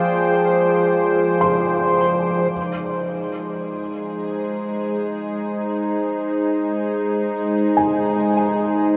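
Weightless and warm, this ambient passage, cut from a longer piece, drifts in a dreamy mix soaked in a huge, wet reverb. An analog pad sits up front from the opening, smooth and warbling with a vintage, detuned sawtooth character and chorus, holding sustained chords that move from Fmadd9 to Ab at 2.5 seconds, where the pad begins to fade in. Underneath, a bowed-like drone enters at 1.0 seconds, string-like and tense yet bright, with a slow attack, vibrato and a noise layer. A felt-muted upright piano joins at 1.4 seconds with soft, intimate arpeggios in a high register, its mellow tone carrying audible action noise and a tape echo. In the background, a twinkling granular texture adds sparkling, octave-up FM shimmer before it drops out at 2.5 seconds.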